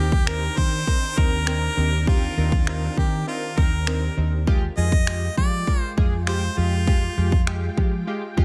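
A dry, close-sounding mix carries this carefree, summery dance-pop cut, where a clear, close-miked harmonica sings the lead with light vibrato, scooped notes and digital delay over glossy, chorused retro synth keys and a silky string machine in the background, both pumping with sidechain, while a round, foam-muted fingered electric bass also pumps beneath a punchy, up-front house drum kit of kick and finger snaps that enters at 0.1 seconds.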